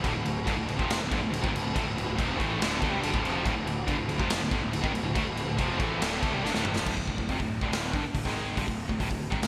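A raw garage drum kit sits up front in this anthemic, energetic hard rock excerpt at 140 BPM in straight 4/4, its punchy kick, medium-tuned snare, hi-hat, toms and crash saturated and gritty in a bright, pumping stone room with a rolled-off top. Behind it, two high-gain distorted guitars and an overdriven electric guitar play a picked riff over a D5 chord, all bright-toned; one high-gain part and the overdriven guitar sit in the background, while the other high-gain part is double-tracked and very quiet. A fuzz-driven picked electric bass growls underneath, blending direct and amped tone. A drum fill at 6.4 seconds leads into a new section at 6.9 seconds, where the double-tracked high-gain guitar drops out and the remaining parts carry on to 9.5 seconds. The mix has the bright sheen of 1980s-style digital production, with a moderate, lush hall reverb of 2.2 seconds around it.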